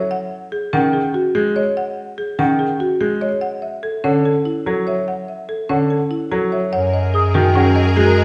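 Minimalist classical pattern music in F# major at 145 BPM, this hypnotic, propulsive excerpt sets a rustic, woody folk marimba melody over dark padauk-bar marimba arpeggios and an intimate grand piano with audible action noise entering at 0.7 s alongside a mellow, airy flute in the background, before a rich bowed string section and a close-miked bass clarinet on F#2 join at 6.7 s, all heard from further back in a reverberant recital hall.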